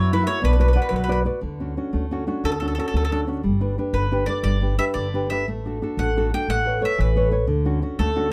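Lively and romantic, this short excerpt of an Italian folk serenade in D major moves in a rubato 6/8 at 119 BPM, with a bright, picked bowl-back mandolin carrying the melody over up-front fingerpicked nylon-string guitar and woody pizzicato upright bass, while a reedy accordion adds a second line only until 1.2 seconds, all in a dry, rough home-demo mix that passes through Bm, Dmaj7, G and D/A to Aadd9 before settling back on Dmaj7.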